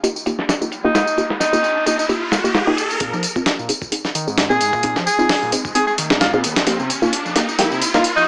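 A breathy alto saxophone carries the melody from 0.8 seconds, played solo in a jazz style with a soft attack, light vibrato and an AM-radio tone trailed by digital delay, sitting up front in this energetic, raw breakbeat cut from a longer piece. Beneath it, a dusty, sampler-style soul drum kit sounds gritty and compressed, with a thumpy kick, a medium-tuned snare and hi-hats all dulled by low-pass filtering, while a layered electronic tambourine adds a roomy shimmer. A muted, detuned sawtooth dub chord stab plucks short, mellow chords through chorus, cassette-tape grit and delay, moving from F9sus4 to Bb9sus4 and back. At 3.0 seconds a growling, overdriven picked electric bass enters low in the mix, dark and round, and both it and the stab move through filter sweeps as the track builds. Underneath, an electronic riser has been climbing since 0.3 seconds. A drum fill arrives at 6.7 seconds, and the whole mix is coloured by a moderate digital room reverb, a high-pass filter and a small-speaker character.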